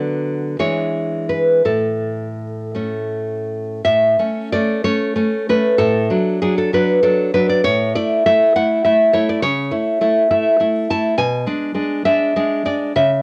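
A fingerpicked nylon-string guitar sits up front and plays alone for the whole 13.2-second passage, which is cut from a longer piece, its warm classical tone carrying an audible finger squeak and a cassette-tape coloring. This nostalgic, sunny romantic piece is in A major and 6/8, moving with a rubato feel between 52 and 72 beats per minute counted in dotted quarters and ranging from A2 to A5. It moves through a short opening phrase into a longer second idea at 3.8 seconds, with light reverb and the intimate character of a home cassette recording.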